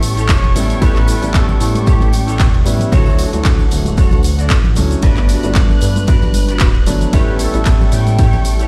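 Nu-disco at 114 BPM in A mixolydian with a sunny, groovy swing, where a punchy, tape-warm electronic kick and a house kit of cabasa, handclaps, hi-hat and ride sit under a glossy, chorused synth bass, a clear, intimate grand piano and a distant violin section both pumping with sidechain, a twangy envelope-filtered electric guitar riff, very quiet tambourine and congas, and a veiled cup-muted trumpet section with dub echo playing the melody from 0.3 to 2.6 seconds and again from 7.1 seconds, all moving through A7, Dmaj7 and Gmaj7 in a bare stone room.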